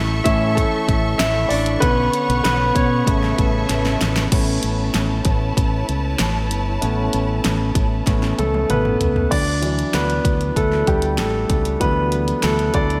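Piano-driven pop at 96 BPM in a straight 4/4, this short cut from a longer piece feels warm and anthemic. A clear, intimate concert grand carries the piece with a solo line across every section; its deep bass, long sustain and audible action noise sit up front in a polished, present sound. A fingered electric bass, direct and amped, adds a punchy low end, while a lush studio string section holds smooth, bowed chords with vibrato until 9.3 seconds. The pop drum kit enters at 0.3 seconds with a layered, electronic character, a punchy kick and a fat snare, re-recorded in a small room and placed up front; alongside crash, hi-hat and toms, it plays drum fills leading into each new section. The harmony moves from A through Bmadd9 and Aadd9 before settling on Dadd9, and a moderate, lush hall reverb gives the mix a dreamy, soaked quality.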